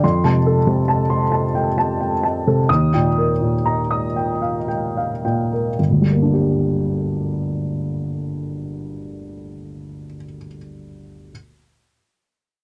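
In a rubato 3/4 that drifts between 53 and 71 BPM and slows over the first 5.8 seconds, this melancholic, reflective neoclassical minimalist piece in G minor, tuned to A4 = 441 Hz, is carried by a solo upright piano from 0.0 to 11.3 seconds, ranging from G1 to Eb6. The piano sounds woody, mellow and slightly detuned, sitting up front with audible action noise as the harmony moves from F to Eb before settling on G minor at 5.8 seconds. A light reverb colours an otherwise dry, close, 1970s-style studio sound, and the passage is cut from a longer piece.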